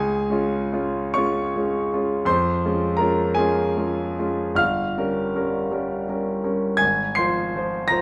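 A rubato 6/8 pulse, slow at roughly 45-56 BPM counted in dotted quarters, carries this melancholic, yearning romantic nocturne for solo piano, a brief passage cut from a longer piece and tuned to A4 = 439 Hz. The warm concert grand sits up front with a natural tone and deep bass, spanning G1 to C7 as the harmony moves from Db through Db/F and Gm7b5 to Fm/Ab by 6.8 seconds. A wet recital hall reverb with a 1.4-second decay surrounds the instrument throughout the 8 seconds.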